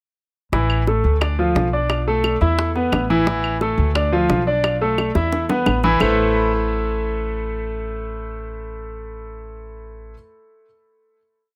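A bright grand piano leads this short, nostalgic Cuban son and guajira piece, its brilliant, polished tone and long sustain carrying an arpeggiated montuno in octaves through a touch of tape echo over a Dm to Bm7 to E5 vamp. A dark, thumpy upright bass with gut strings plays a pizzicato tumbao that anticipates the chords, while tight, high-tuned bongos in steady eighths and woody, vintage claves on a two-bar time line drive the groove. The percussion drops out after a drum fill from 5.0 to 6.0 seconds, leaving piano and bass to ring out on a closing Amadd9 chord in a close, detailed room with light reverb.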